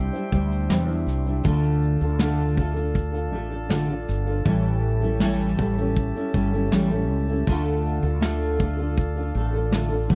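A straight 4/4 pulse at 80 BPM from a muffled, lo-fi brush kit with a punchy kick, snare and shaker underpins this tender, reflective acoustic pop fragment in D minor, where a double-tracked, full-bodied nylon-string guitar plays thumb-plucked accompaniment up front, a dark, round fretless electric bass with analog chorus holds the low end, and a mellow brass ensemble sustains chords further back over Cadd9, Dm and A7, all in a dry, close small-room sound with a 1970s studio character.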